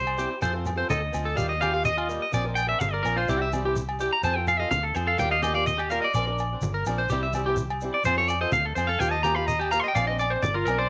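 Highlife guitar band music at 126 BPM in Bb major with a sunny mood, where a bright, up-front clean electric guitar with subtle chorus solos over F, Ebadd9, Bbadd9 and C, while a twangy, slightly broken-up electric guitar with slapback echo plays arpeggios, a dark, boxy fingerpicked swing-style acoustic guitar with audible finger squeak adds accompaniment, a round, punchy foam-muted electric bass anchors the low end, and ringing agogo bells, a grainy shekere and very quiet, soft-handed congas fill out the percussion in a light studio reverb.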